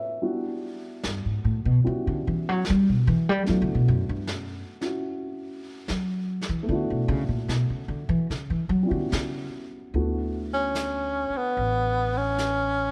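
A pizzicato upright bass with a woody, thumpy gut-string tone takes the lead up front in this late-night, intimate jazz ballad excerpt in D major, soloing until 9.9 seconds over a dark, boxy upright piano and a vintage brush kit with a rolled-off top. The piece moves at a slow 74 BPM with a swung feel, passing through Em7, Em13 and D69 chords. At 10.5 seconds a clear, present tenor saxophone enters with vibrato and a subtone, all set in light reverb with a warm, dark production.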